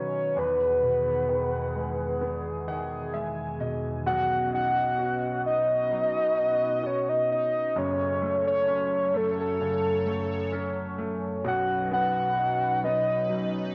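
A soft, round synth lead layered in octaves carries the melody from the very start of this hopeful, tender pop ballad fragment, its mellow tone touched with chorus and vibrato and placed up front, while a clear baby grand piano accompanies and a resonant, detuned sawtooth pad holds slow-blooming chords shaped by a moving notch filter. The piano plays a fill from 2.2 to 4.1 seconds, carrying the harmony from an opening Emaj7 into a passage that moves from Badd9 to F#m and back to Badd9. Cassette tape colours the lead, piano and pad, and a moderate spring reverb gives this home recording an intimate sense of space.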